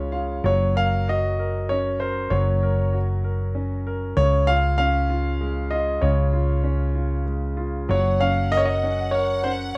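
A warm concert grand piano carries the melody from 0.5 seconds, intimate and up front with audible action noise, slapback echo and plate reverb, in this heartfelt, swaying six-eight pop ballad excerpt at 64 BPM. A second grand piano, clear and polished with long sustain and plate reverb, plays the accompaniment from the very start, alongside a brief grand piano fill at the opening, while a round, punchy hollow-body electric bass sounds dark and amped beneath chords moving from Gb to Db and back to Gb. A lush, bowed violin section with vibrato enters on Gb5 at 7.9 seconds, all within a rough home-demo mix with moderate room reverb.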